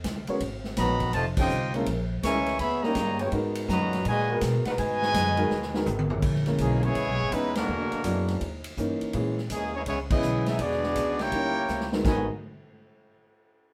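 A live, roomy studio sound frames this dramatic, sultry big band swing excerpt in G# minor at 165 BPM, where a tight, up-front trumpet section with light vibrato carries the melody over a warm trombone section's second line, veiled bucket-muted trombones hold sustained chords until 6.6 s, a short-sustain grand piano with deep bass accompanies, a woody, growly pizzicato upright bass anchors the low end, and a punchy big-room drum kit swings beneath full-band accents at 1.3 s and a drum fill leading into the second section at 6.2 s.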